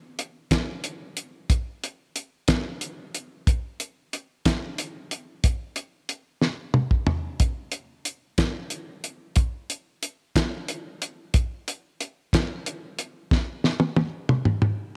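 A dry, up-front recording with light reverb puts a damped 70s acoustic drum kit front and centre, its fat snare and tight kick set against a rolled-off top end. This hypnotic, kaleidoscopic rock passage in 6/8 with a straight feel is drums alone, cut from a longer piece, with hi-hat, kick, snare and toms carrying the groove. Drum fills break in at 6.4 seconds and again at 13.3 seconds, running to the end.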